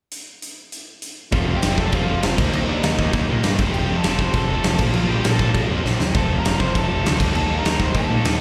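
Punk rock at a rowdy, upbeat clip, this short cut opens with a big, punchy drum kit alone, up front with crash, hi-hat and a medium-tuned snare in a bright stone room, before a dark, distorted bluesy lead guitar with slapback echo, three picked overdriven rhythm guitars (one bright and slapback-echoed in the background, another bright and double-tracked, and a very quiet sludgy one), and a fuzzy overdriven bass all crash in at 1.3 seconds over chords moving from F through Eb and Bb, with a drum fill at 5.8 seconds, the whole thing sounding like a live gig heard through the venue's PA.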